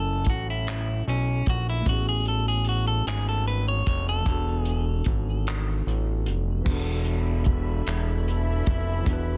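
A clean, compressed electric guitar with delay sings a yearning, late-night melody in this slow six-eight R&B fragment until 4.8 seconds, over a worn, slightly out-of-tune tine electric piano with light overdrive, a fat, saturated analog bass with a filter sweep, and a warm soul drum kit with a tight kick, dark cymbals and handclaps, before lush bowed strings enter at 6.7 seconds and a dark jazz-style horn section adds stabs from 7.9 seconds, set in a small room reverb and a dense, heavily limited modern master.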